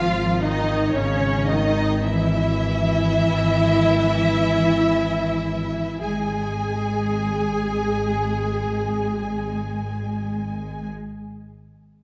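A high Ab5 from the up-front violin section opens this slow, lyrical string-orchestra passage in free time, its expressive, vibrato-rich melody settling over a D-flat minor chord with A-flat in the bass at 1.0 seconds. A focused second violin line sits in the background, a smooth, even viola section fills the middle, and a distant cello section pairs with a rich, up-front double bass section holding a low Ab1. The music slows through its first 6.0 seconds, all set in a dark, warm production with wet concert hall reverb, in a passage cut from a longer piece.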